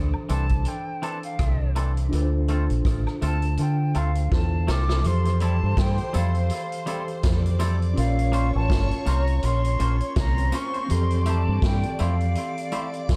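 A swung sixteenth-note groove in 4/4 carries this smooth, romantic lovers rock reggae passage, built on a vintage drum kit's punchy kick, rim click and hi-hat, a round, up-front fingered dub bass, and quiet woodblock and tambourine set in the background. A mellow tine electric piano and clean, twangy guitar stabs fill out the chords, while a distant, expressive concert flute carries the melody with vibrato, the guitar and flute both trailed by tape echo. After a drum fill at 4.3 seconds, a swirling, phased string machine enters at 5.0 seconds as a second line, lending a bright, warbling lift to the dark, lightly reverberant production.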